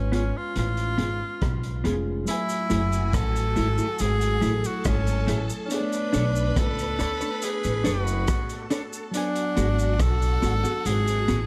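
A breathy, up-front tenor saxophone carries the melody with light vibrato and tape echo over a worn, slightly out-of-tune electric piano and a woody pizzicato upright bass in this smooth, longing lovers rock reggae excerpt at 70 BPM in F# minor, joined almost at once by compressed clean guitar stabs with chorus and dub echo and a saturated, gritty breakbeat kit with a punchy kick, before a swirling phased string machine and a vintage cabasa slip in behind at 2.3 seconds.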